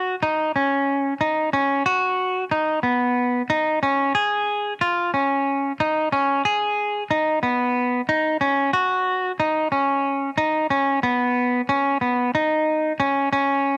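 A home cassette recording with light reverb and a tape character frames this bright, intricate progressive instrumental in 7/8, cut from a longer piece. A lone clean electric guitar, fingered and sitting up front, carries the whole 13.8 seconds with a twangy, compressed tone and a warm body. It moves through one passage before shifting into a new section at 11.0 seconds.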